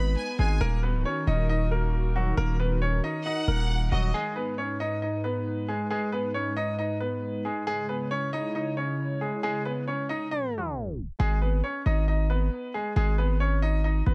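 A dry, echo-soaked mix opens this dark, brooding half-time hip hop piece, where a polished concert grand piano carries the melody through analog delay, a focused, bowed violin section adds brief second-line phrases, a hollow, flute-like pad holds chorused chords through a tape stop that begins at 10.3 seconds, fading out at 11.2 seconds, and a distorted, aggressive 808-style bass sits up front, dropping out at 4.1 seconds and returning at 11.2 seconds.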